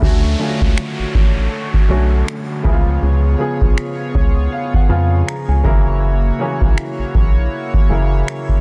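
A swung 16th-note groove at 80 BPM in 4/4 drives this tender, romantic contemporary R&B excerpt. A booming analog drum machine sits up front with a deep kick, finger snaps and a softly clipped snare, while a rubbery, bouncy square-wave bass plucks dark, resonant notes and stops at 8.2 seconds. A shimmering, retro pulse-width pad with chorus holds bright sustained chords over Dmaj7, C#7 and F#7, and a baby grand piano with a natural, short-sustained tone adds accompaniment and a fill from 3.8 seconds. An electronic downlifter runs alongside until 6 seconds, all in a dry, dense, heavily limited modern mix.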